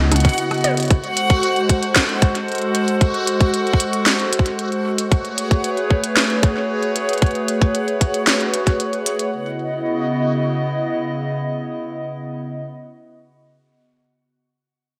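A soft, hollow pad, flute-like and mellow, with chorus and vintage 12-bit sampler grit, opens this eerie, intricate IDM excerpt in C# minor at 114 BPM, alongside a reversed, granular texture that swells dreamy and bright in its own reverb. A glitchy electronic kit of tiny snare, clicky hats, rim clicks and toms, treated with gated reverb and delay, sits up front with a tight, tape-tinged kick as the chords move from C#m9 through G#7b9 to Amaj9. The kit and texture fall away at 9.3 seconds, leaving the pad on C#m9 until 12.6 seconds in a 1980s-style digital mix bathed in plate reverb.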